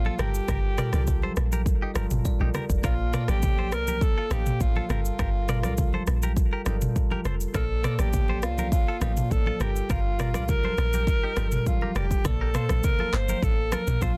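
An alto saxophone with vibrato and a smooth top carries the melody from the very start, over a bell-like tine electric piano treated with phaser and a dark, woody log drum bass with a punchy, fast attack. This is a joyful, sunny afrobeats excerpt in Bb major at 102 BPM in a straight 4/4, cut from a longer piece. Almost at once, a direct-recorded clean electric guitar joins with a twangy, picked riff fed through tape echo. Thick-skinned congas sit in the background, and an electronic afro-pop drum kit sits up front, with an overdriven, deep kick alongside handclaps, rim click, shaker and toms. The electric piano adds a short fill from 2.0 to 2.8 seconds, and the harmony moves between Gm9 and Bbmaj9 before settling on Bbmaj7sus2 at 12.2 seconds for the closing stretch. Light reverb surrounds a dense, heavily limited modern master.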